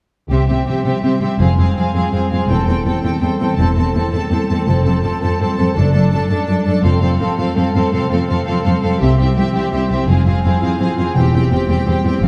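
A dark, reverberant concert-hall sound frames this heroic, triumphant cinematic string passage in C major, moving at 111 BPM in a straight 12/8 as a build-up cut from a longer piece. A lush, vibrato-rich violin section carries the melody high above a smooth-topped second violin line and a distant, expressive viola accompaniment, while a bright, ringing harp spins fingerpicked arpeggios in the background. Close, focused cellos and smooth, even double basses anchor the bass prominently under chords that shift from C through Fm and F, with a brief D/F# before returning home.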